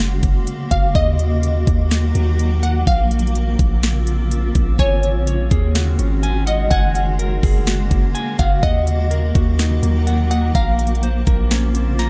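A deep, sine-toned 808-style bass sits up front beneath a knocking, crisp electronic R&B drum kit in this blissful, dreamy cloud-rap clip at 125 BPM in a half-time feel, while a blurred, detuned granular pad with its own reverb and sidechain pumping holds chords from Gbadd9 through Ebm and Bbmadd9, a crystalline wavetable pluck carries the melody through chorus and digital delay, and a clean, picked electric guitar joins with delayed arpeggios at 4.8 seconds, all in a dry mix showing lossy compression artefacts.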